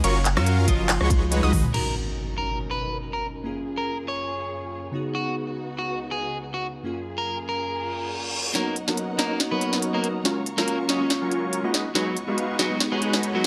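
This euphoric, lush future bass excerpt in F# major opens on a drop at 141 BPM in a swung half-time feel: huge detuned supersaw chords, a punchy wave-folded unison pluck arpeggio and a saturated sine sub bass pump under sidechain beside a crisp, up-front trap kit and a brief hard-clipped electronic kick, while a twangy, slightly broken-up electric guitar melody with delay enters and carries on to the end. At 1.7 s an impact ushers in glassy chorused digital keys and dark, expressive symphonic strings under a filter sweep, as the chords move through Bmaj9, F#maj7 and C#9sus4. A reverse cymbal leads to 8.5 s, where the supersaws, sub bass and drums return for a build-up with a filter sweep on the supersaws, all in a moderate room reverb.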